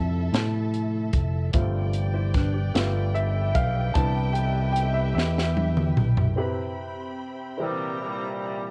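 Slow, jubilant gospel in 6/8 and C major at 50 BPM, carried by a woody upright piano taking a solo through the opening over a soft, flute-like tonewheel organ with key click and fast rotary speaker in the background, an intimate bowed string section playing sustained chords, and a punchy, amped fingered electric bass up front. A crisp fusion drum kit with a high-tuned snare and airy studio-room sound drives the groove, breaking into a fill at 5.2 seconds, while a dark, clean electric guitar adds a brief second line. At 7.6 seconds a mellow, loose horn section with vibrato brings in the melody as the harmony moves to C7, all heard through the light reverb and tape character of a home cassette recording.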